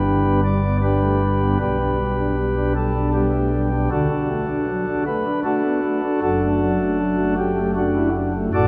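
Solemn and grave, this short classical chorale-style passage for solo pipe organ moves at 78 BPM in a straight 3/4, cut from a longer piece. Soft flute stops give the organ a warm, romantic voicing that sits up front, spanning from F#1 to D5 as the harmony moves from G to G/B, then D at 3.9 seconds and D/F# at 6.2 seconds. A wet cathedral reverb with a long 4.7-second decay fills the church or concert-hall space around it.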